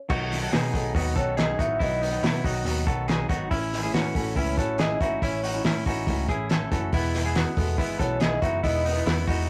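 A muffled, cloth-damped drum kit drives this straight 4/4 groove at 140 BPM, its fat snare, tight kick, hi-hat and dark crash cymbals sitting up front with a gritty, lo-fi edge. This bright, nostalgic stretch of jangly indie pop in B mixolydian is cut from a longer piece, moving from B to A at 3.5 seconds and on to E at 6.9 seconds. A round, punchy picked bass and a clean, compressed hollow-body guitar playing accompaniment run through the whole passage, while a direct-recorded guitar adds bright, twangy arpeggios. From 0.5 seconds a soft octave-layered synth lead carries the melody, a full blend of triangle, sawtooth and sine with a sub octave, fast attack and vibrato, colored by chorus and tremolo. The rough rehearsal-room recording is pushed through tube saturation and set in a moderate studio reverb.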